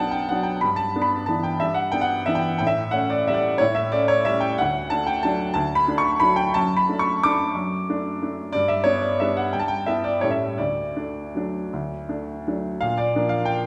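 Elegant and playful, this classical piano waltz in D major sways in a rubato 3/4 between 154 and 194 BPM as a clear, woody upright piano plays alone with a polished tone and long sustain, moving from B minor through A7 to D and G before a turn to B-flat at 12.8 seconds, all within a wet recital-hall reverb heard from farther back in the room in this 13.7-second cut from a longer piece.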